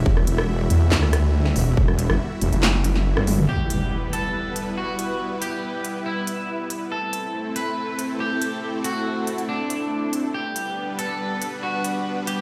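Built on a half-time 4/4 groove at 140 BPM in E minor, this menacing, chaotic slice of heavy wobble dubstep opens straight into a drop. A saturated, dark wobble bass sits up front until about 3.5 seconds, joined by a snarling, growling saw bass with a moving notch that drops out around 3.2 seconds and an overdriven, punchy electronic kick that stops near 1.9 seconds. Beneath them a big-room dance kit of crisp hats, a punchy snare, handclaps, rim clicks and toms runs throughout, and a brief fill leads into an impact that hits at 3.5 seconds. From there a slightly broken-up, twangy electric guitar carries the melody through lush chorus and digital delay over an Em, Am and G progression. A bright, sustained supersaw pad with sidechain pumping holds chords underneath for the whole piece, and the mix sounds as if played on a big system in a bare stone room with light reverb.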